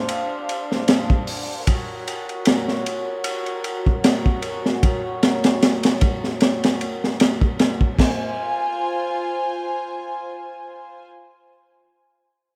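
A rough home-demo mix with light reverb frames this cinematic, hypnotic trip hop excerpt, where a gritty, saturated breakbeat kit with a high-tuned snare, tight kick and dark cymbals sits up front until 8.2 seconds while a distant, floating violin section holds soft-attacked sul tasto chords through a low-pass filter sweep, carrying on alone to the close at 11.0 seconds.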